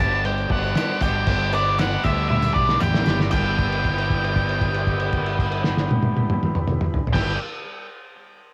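This upbeat, carefree indie rock excerpt opens with a dark octave-fuzz lead guitar carrying the melody through cassette grit and tape echo. Beneath it are a biting overdriven guitar riff, a very quiet semi-hollow guitar riff, a growling overdriven bass and a faint tonewheel organ holding smooth chords with chorus vibrato, moving from Gmaj7 to G6. A cloth-damped, thuddy drum kit sits up front with a fat snare and muffled cymbals, and a jingly tambourine plays in the background until 3.6 seconds; after a drum fill, a held note rings from 3.3 seconds in this lo-fi home cassette recording with light reverb.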